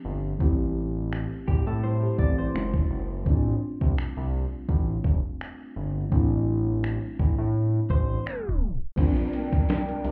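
Heard as if muffled through a wall with club reverb, this dreamy, romantic contemporary R&B excerpt at 84 BPM in F major rides a lightly swung groove from a crisp 8-bit drum machine with a thumpy kick, snaps and hi-hat, over a fat, saturated, nasal analog bass and muted, felt-like synth keys with a warbling, vintage chorus tone moving through Am7, Gb69 and F69. A clean, direct-recorded electric guitar adds brief arpeggios with spring reverb and delay, and a tape stop hits at 8.3 seconds. At 9.0 seconds the harmony shifts to Bb6 as a mellow small flute group holds sustained chords over a background downlifter, and a hollow, woody clarinet-like synth lead enters at 9.3 seconds on a single G5 with vibrato.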